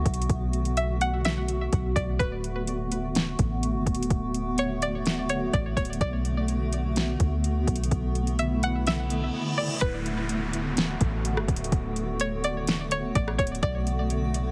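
A blurred, granular cloud pad with sidechain pumping and a deep, round 808-style bass open this blissful, floating stretch of atmospheric cloud-rap, joined at once by a smooth, overdriven R&B drum kit with a soft kick, fat snare, rim clicks and metallic hats in a half-time feel. From 0.8 seconds a bright, twangy, string-like resonator pluck carries the melody through chorus, delay and a low-pass filter, while the chords drift between Bm7 and D6. At 9.1 seconds a reverse cymbal and downlifter enter, and the drums briefly fall silent from 9.3 seconds. The mix has a heavily compressed, radio-like sound with light digital ambience.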